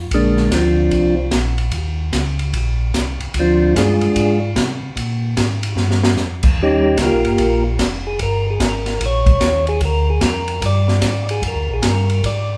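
A live, one-room sound fills this short cut from a soul jazz organ trio, soaked in lush large-studio reverb. At 148 BPM in 4/4 with a 65% swing on the eighths, the groove in Bb mixolydian feels greasy and swinging. A mellow tonewheel organ carries the bass line, round and clean with a touch of key click and a slow rotary speaker. A second tonewheel organ takes the melody and solos from 0.1 s; it sits up front with a percussive edge from third harmonic percussion, also turning through a slow rotary. The acoustic jazz kit is close and present, with a small-room character, dark cymbals, a high-tuned snare and a boomy kick, and it drops in a fill at 5.8 s. The harmony moves through Bb9, Eb5, Bb9, Eb9 and Bb7.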